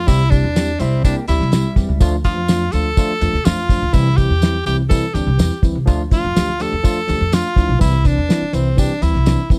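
Passionate and driving, this uptempo 1960s-style soul excerpt at 124 BPM alternates between C and Dm as an edgy tenor saxophone with light vibrato carries the melody over a woody, growly pizzicato upright bass, a worn, slightly out-of-tune tine electric piano, a dry cloth-damped drum kit with a fat snare and tight kick, and a jingly tambourine, while a mellow, compressed electric guitar adds a brief riff with subtle chorus from 0.8 to 2.0 seconds, all recorded with little reverb.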